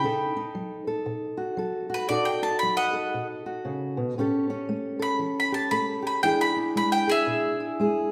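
Soulful and swaggering, this short excerpt of acoustic country blues swings at 116 BPM in 4/4, with a bright bowl-back mandolin picking the double-string melody up front over a dark fingerpicked steel-string guitar, finger squeaks audible, moving through B7, A7 and E7, all set in the wet reverb of a church or concert hall.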